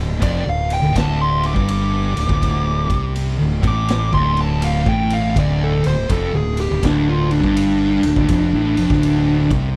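The recording is dry and close, with very little reverb, and this short cut from a longer piece sits in a sludgy, heavy stoner and doom metal groove at 82 BPM in 4/4, with a swung eighth-note feel in D minor over a single D minor chord. A thick, double-tracked fuzz guitar drives the riff up front from the very start, its picked, distorted tone running low from D2 to C3. Beneath it, a fingered electric bass in fuzz and overdrive sounds growly and punchy, heard both direct and through an amp down in the D1 to C2 range. A dark, picked fuzz lead guitar solos from 0.2 seconds, placed up front with distortion and a slapback echo as it ranges from D4 up to D6. The raw garage drum kit also enters at 0.2 seconds, an acoustic set with a punchy kick, a medium-tuned snare and ride cymbal, caught in a bright stone room that pumps, its saturated, gritty sound carrying a rolled-off top.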